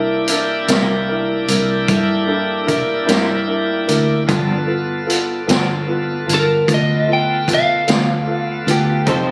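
A straight 12/8 pulse underpins this slow blues, a swaggering, gritty fragment cut from a longer piece that moves from C7 to G7. A lightly driven lead guitar carries the melody up front, picked and compressed with a slightly broken-up edge, over a boxy baby grand piano and a bright, shouting tonewheel organ that holds sustained chords with key click, overdrive and a slow rotary speaker. A round, foam-muted fingered electric bass anchors the low end, and a vintage acoustic kit enters at 0.3 seconds with hi-hat, a punchy kick and a high-tuned snare, its top rolled off. At 0.7 seconds a dark, lo-fi electric guitar through a small old amp joins the accompaniment with tremolo, and at 8.7 seconds another small-amp guitar adds a brief second line in the background, bathed in spring reverb. Light reverb and a phone-in-the-room capture give the sound a raw, intimate character.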